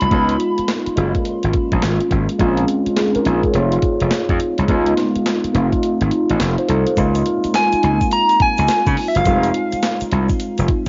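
This short cut from a longer piece has the dulled, homemade sheen of a cassette recording, with the top end rolled off and a light touch of reverb. It is slick, punchy new jack swing R&B in four, with a swung sixteenth-note feel. A clean 12-bit drum machine with a sampler-style, thumpy kick, medium-tuned snare, hi-hat and handclaps runs throughout, its kick dropping out from 5.8 seconds until the second section begins. A gritty, overdriven slap bass sits up front beside a mellow tine electric piano treated with phaser, which carries the chords through seventh and ninth colours. A round, warbling FM synth lead with chorus plays the melody in a brief opening phrase, then returns at 7.6 seconds. From 7.0 seconds a grainy tube shaker adds soft texture in the background.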